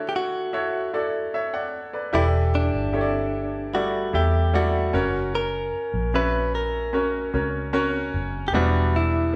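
A wet, large-studio reverb places this short pop excerpt in a single shared room, as if the band were playing live together. At 75 BPM in a straight 4/4, tuned to A4 = 442 Hz, the mood is emotional and tender. A bright, brilliant baby grand piano carries the accompaniment from the start, intimate and polished with short sustain and audible action noise. A clean, direct-recorded electric guitar, picked and compressed with a warm edge, takes the melody almost at once in a narrow middle range. At 2.1 seconds a vintage fingered electric bass joins, dark, round and punchy with a foam-muted, amped tone sitting up front, as the harmony moves from Dadd9 through A7sus4/E and F# to a closing Em7 at 8.5 seconds.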